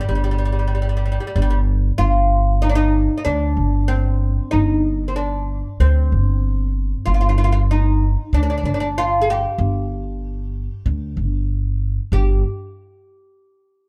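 Arabic maqam ensemble music in G maqam bayati at 95 BPM in a straight 4/4, tuned to A4 = 437 Hz, sets a soulful, longing mood in this fragment of a longer piece. A woody, fretless oud with double strings and a deep, plectrum-plucked tone carries the melody up front in a plate reverb from 0.0 seconds. A thumpy pizzicato upright bass on steel strings enters at 0.1 seconds and also sits up front. Both parts play until 12.4 seconds, within a dark, warm production and a light room reverb.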